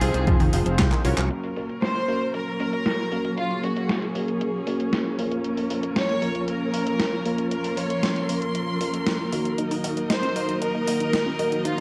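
Opening on a reedy violin section melody with tape echo over rich, bowed string chords, glossy chorused polysynth stabs, a growly fingered bass, a bright analog pluck arpeggio and an overdriven, gated drum machine of handclaps, hi-hat and snare, this bittersweet, nostalgic italo disco excerpt briefly adds a punchy electronic kick before a drum fill, after which the bass and pluck drop out at 1.3 s as filter sweeps take hold of the polysynth and drums, with the pluck returning at 9.6 s, all in a dry, close 1970s-style studio sound.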